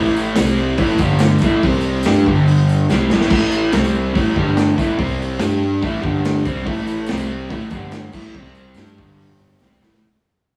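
A straight 4/4 pulse carries this raw, swaggering garage rock snippet, where a crunchy, double-tracked overdriven guitar riff sits up front over a growly fretless bass, a jingly tambourine in the background and a gritty, saturated breakbeat kit with dark cymbals that enters at 0.4 seconds and rolls through drum fills at 2.9 and 9.6 seconds, all caught in a rough rehearsal-room sound as a fade-out begins at 3.3 seconds.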